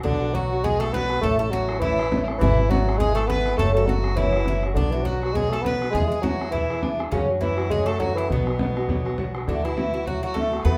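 A spirited, wild Celtic reel, cut from a longer piece, with a swung lilt and a mellow, classical-style bassoon carrying the melody up front. A clear, biting fiddle with a smooth top and a metallic, double-strung Irish bouzouki share a second line above a dark, boxy fingerpicked parlour guitar, a woody pizzicato upright bass and a boomy, distant bodhran in a large room. The recording carries a moderate studio reverb, and the harmony moves through a minor progression before opening onto a Dadd9 chord as a new section begins at 9.5 seconds.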